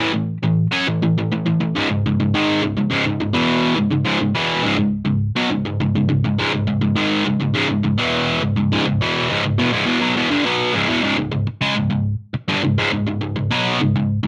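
A straight 4/4 metal pulse at 103 BPM drives this dark, relentless solo for overdriven electric guitar in C# minor, tuned slightly flat to A4 = 435 Hz. The picked, double-tracked guitar sits up front with a bright, saturated bite roughened by cassette tape, ranging from C#2 to C#4 as it moves from A5 to C#m before settling on C#5 at 11.0 s. A moderate small-room reverb and the worn character of a home cassette recording frame this short cut from a longer piece.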